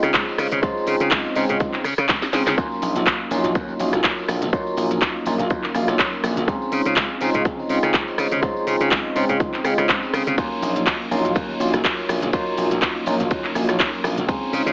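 Nostalgic and funky, this short excerpt of filtered disco house moves at 123 BPM in 4/4 with a light 16th-note swing, sitting in Eb dorian over a loop of Dbmaj9 and Ebm9 chords. A clean tine electric piano carries the accompaniment up front, heard through built-in speakers and colored by a phaser, vintage 12-bit sampler grit and sidechain pumping. Beside it, a bright, punchy slap bass sits forward in the mix, also breathing with the sidechain. The house drum kit brings a cracking snare, crisp hats, handclaps, ride cymbal, rim click and shaker, with studio reverb and pumping on its hats, cymbals and percussion, while a punchy, layered electronic kick enters at 0.1 seconds. Tambourine and congas add a warm, close acoustic texture in the background, and a brief drum fill at 2.1 seconds leads into the Ebm9 chord. The whole mix is framed with light reverb and an AM radio sound.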